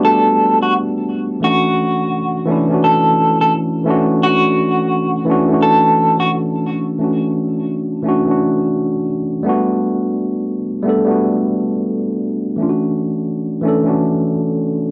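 A swung hip hop groove at 86 BPM in 4/4 sets a dreamy, mellow mood in D major, drifting between Gmaj9 and Dmaj9 chords in this short cut from a longer piece. A worn, slightly out-of-tune tine electric piano sits up front through its built-in speakers, lightly overdriven and dulled by a low-pass filter and cassette tape as it accompanies from 0.0 to 14.9 seconds. A dark, slightly broken-up electric guitar through a small old amp picks a brief melody until 6.3 seconds, shimmering with tremolo and tape echo in a close booth ambience that gives the home cassette recording its intimate feel.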